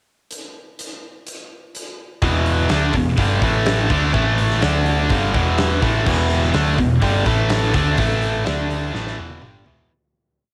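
A home cassette recording with light reverb captures a short, anthemic and energetic hard rock piece at 125 BPM in a straight 4/4. A huge arena drum kit with bright cymbals, a fat snare and a punchy kick opens with a pickup bar. At 2.2 seconds a tight, double-tracked distorted guitar enters with a power-chord riff moving through E5, A5 and D5, doubled by a dark, round hollow-body electric bass driving in eighth notes. A drum fill at 8.9 seconds closes the fade-out that runs from 8.0 seconds.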